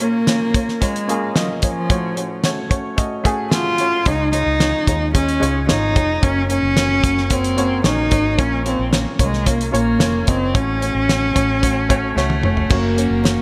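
Hopeful and anthemic, this piano-driven pop excerpt moves in a straight 4/4 feel. A dark, expressive solo cello carries the melody up front, bowed with vibrato and portamento, over a woody, worn upright piano that sounds slightly detuned as it supplies the accompaniment. A damped 70s drum kit sits close and dry, with a fat snare, tight kick, dark cymbals and toms under gated reverb, and it plays a fill at 12.2 seconds. A vintage foam-muted fingered electric bass, round and amped, enters at 4.1 seconds, and a full-bodied picked steel-string dreadnought guitar slips in quietly in the background at 12.7 seconds, finger squeak audible. Moderate plate reverb and bright 1980s-style digital production frame the whole passage.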